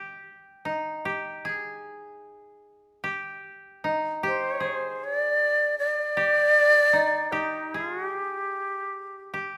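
Set in a moderate recital-hall reverb, this short cut from a longer piece of calm, austere Japanese traditional chamber music moves in a free, rubato 4/4 around 69-79 BPM in G miyako bushi. A woody, fingerpicked koto plays the second line from the start, dry and close. At 4.3 seconds a bright, airy bamboo shakuhachi enters up front with the melody, its straight, tongued tone carrying a breathy chiff and an expressive, lifted top end.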